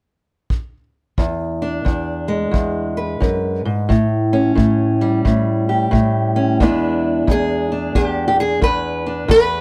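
A swung 4/4 pulse at 89 BPM sets up this short, rollicking acoustic country blues cut from a longer piece, with a tight, natural kick drum played with brushes entering at 0.5 seconds. At 1.2 seconds a fingerpicked steel-string parlour guitar takes the melody, its dark, boxy tone sitting up front and ranging from E2 to B4. The harmony rests in E mixolydian, moving from E7 to A7 at 3.9 seconds and back to E7 at 6.6 seconds, giving the brief passage a soulful, swinging feel. The guitar is tuned slightly low, to A4 = 438 Hz. The sound is a dry, close 1970s-style studio recording with light reverb, the kick sitting lower in the balance beneath the guitar.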